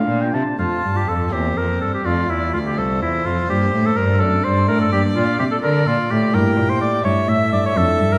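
Radiant and dance-like, this baroque-style sonata movement in 6/8 sways with gentle rubato as a clear, focused violin carries the melody from 0.6 s over a warm, up-front oboe second line with light vibrato, a rich, close solo cello on the bass and thick, romantically voiced pipe organ foundation stops, all set in a wet concert hall reverb in a fragment cut from a longer piece.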